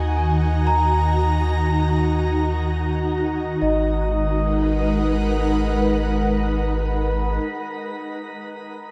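An airy, detuned sawtooth pad sits up front with slow-blooming sustained chords in chorus, over a round sine sub bass and a delicate, bell-like celesta arpeggiating in the background through tape echo, shaping this spacious, melancholic ambient passage in free time and G# minor as D#m gives way to G#m7 at 3.6 s, all bathed in a long shimmer reverb, with the celesta ringing on alone from 7.4 s until 8.9 s.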